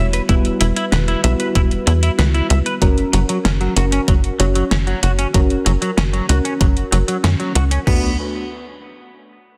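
A bright, twangy clean electric guitar riff under a filter sweep opens this moody, driving synthwave excerpt, joined at once by soft, warbling FM electric piano stabs with chorus and tape echo and a punchy, nasal, sidechain-pumped sawtooth sequencer bass, while a layered electronic pop kit brings metallic hats and a fat snare from 0.1 seconds and an overdriven, knocking kick with crash and toms from 0.3 seconds, all within a dense, heavily limited master as the chords move from Emadd9 to F# before landing on Bm7 at 7.9 seconds.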